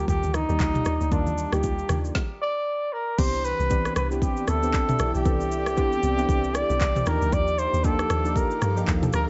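A dry, dark-toned mix carries this soulful amapiano excerpt at 116 BPM, where a veiled, breathy bucket-muted trumpet sings a jazz-style solo with light vibrato and scooped notes through digital delay over detuned, chorused analog keys, a round FM log drum bass, an electronic Afro-pop kit with a deep kick and woody snare, and low-tuned congas that drop out at 2.0 seconds, before a brief stop gives way to a drop at 3.2 seconds and an ethereal, airy pad with sidechain pumping settles in at the back from 4.1 seconds.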